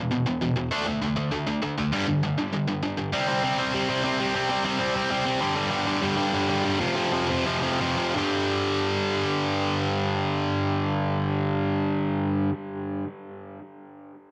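Energetic and rowdy, this short punk excerpt puts a lone distorted electric guitar front and center for its full 12.5 seconds. The guitar is bright and overdriven, picked and double-tracked, ranging from E2 to D4 with analog delay trailing its crunch. Set in G major at a brisk tempo between 167 and 199 BPM in straight 4/4, it drives through power chords on E, D, G, C and F. The pace slows from 5.6 to 8.1 seconds before landing back on a G power chord as the final stretch begins. Light reverb surrounds the part, and the heavily compressed, radio-like sound gives it a squeezed, in-your-face character. The excerpt is cut from a longer piece.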